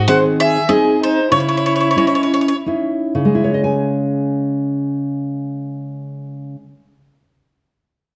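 A warm, reverberant production with the bloom of a recital hall frames this wistful, romantic Italian folk serenade in C# minor, a lightly swung 3/4 at 79-100 BPM that slows through its opening seconds, where a bright, double-strung bowl-back mandolin picks the melody up front and a woody, vibrato-laden dark violin bows a smooth second line beneath it until both stop at 2.6 seconds, leaving the full-bodied, fingerpicked classical nylon-string guitar to carry on alone until 7.0 seconds.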